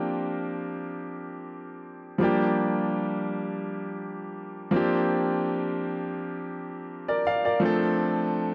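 A dark, warm production with light reverb and a small-room ambience frames this brief R&B excerpt of just 8.5 seconds. A clear, up-front baby grand piano plays alone throughout, its long sustain and audible action noise giving the sound a natural closeness. The longing, sensual harmony moves from C9sus4 to Bb6 and back before settling on F6.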